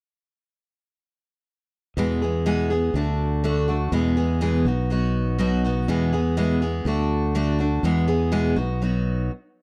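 A straight 4/4 pulse at 123 BPM carries this short excerpt of folk rock and heartland rock in E major, with a hopeful, warm mood. Both instruments come in together at 2.0 seconds and stop together at 9.3 seconds, leaving a brief pause before the piece is cut. A picked steel-string acoustic guitar plays the accompaniment with an up-front, auditorium-sized tone, spanning E2 to G#4. A fingered electric bass sits just beneath it with a direct, close presence, holding the low register between B1 and E2. The chords cycle through E, D, E and B, repeating once. The production is dark, with light reverb and the feel of a small room around the players.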